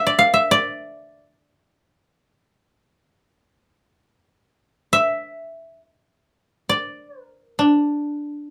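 In free, unmetered time, this meditative and austere piece of Japanese chamber music features a solo koto, played with fingerpicks, across the full 8.5 seconds. Its woody, dry voice sits up front, moving between D4 and F5 in the hirajoshi scale. A moderate small-room reverb surrounds the instrument in this fragment cut from a longer work.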